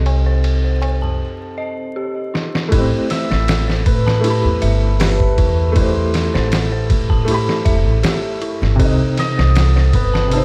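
A compressed, pitched-down sampler drum kit with a thumpy kick and low-passed cymbals sets a straight 79 BPM trip hop groove in A minor, joined briefly by close, dry, low-tuned tabla, with a break from 1.2 to 2.7 seconds capped by a drum fill. Woody pizzicato upright bass sits up front beneath a soft, felt-muted piano carrying tremolo, 12-bit sampler grit and tape echo, while an eerie, inharmonic detuned synth bell spins chorused arpeggios and a tense, string-like drone sits in the background until 1.2 seconds. From 3.1 seconds a shimmering hammered cimbalom carries the melody over chords moving from Cmadd9 to Am7 and Cm, all wrapped in a dark, melancholic production with vinyl crackle and small-room ambience in this excerpt from a longer piece.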